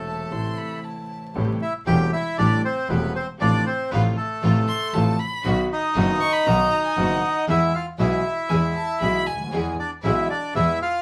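A reedy, airy bandoneon carries the melody up front from the start of this melancholic, dramatic tango in A minor, moving at 117 BPM in 4/4 with a rubato feel. Beneath it, a concert grand piano gives accompaniment with a deep bass, while a bowed double bass with light vibrato and a smooth top plays the low line and a symphonic string section adds clear, intense stabs in the background. An expressive solo violin, close and soft in attack with vibrato and portamento, sings a high second line briefly at the opening, drops out around 1.4 seconds as the break ends, and returns from 4.7 to 9.7 seconds. The harmony moves from Am through Am7 and F/A to B and then E, heightening the tension of this short fragment cut from a longer piece. The band plays live in one room with moderate studio ambience, and a layer of vinyl crackle gives the sound an aged, intimate character.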